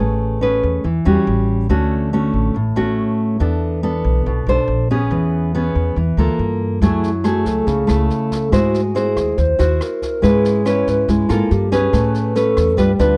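A straight 4/4 bossa nova groove sets a sophisticated, breezy mood in this short excerpt from a longer piece. A dark, fingerpicked nylon-string guitar sits up front from the first second, its classical tone moving through lush changes such as Amaj9, Dmaj7, E7sus4 and a surprising Bbmaj9, while a woody pizzicato upright bass holds the low end beneath it. At 6.8 seconds a jazz kit played with brushes joins quietly, with a boomy kick, rim clicks and a medium-tuned snare, as a hollow, clarinet-like synth lead enters as a second line, soft and mellow with vibrato and a gentle chorus shimmer. The harmony turns more colourful here, passing through F#m9, G#7b13 and C#m7/G# before settling back on Amaj9. The whole performance has the close, dry intimacy of a 1970s studio, with only a touch of small-room reverb.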